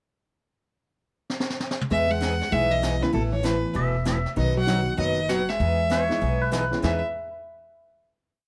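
A rich, smooth fiddle carries the tune up front, singing short song-like phrases with a light vibrato over this brief, playful and cheerful piece of western swing in E major, swinging at 195 BPM. Brushed drums open with a fill from 1.3 seconds, then keep a backbeat with sweeps on a high-tuned snare over a boomy kick, while a woody, thumpy upright bass plays a two-beat root-and-fifth pattern and a bright dreadnought acoustic guitar picks four to the bar, finger squeak and all. A dark, clean hollow-body electric guitar shadows the fiddle with a harmony line mostly in sixths, and a woody upright piano slips in at 2.5 seconds with syncopated, close-voiced comping in the background, its action noise audible. At 3.8 seconds a twangy pedal steel joins with volume swells and answering blues licks. The chords move from Emaj7 through Asus2 and B before returning to Emaj7 and a final held chord, all set in a studio room with light reverb.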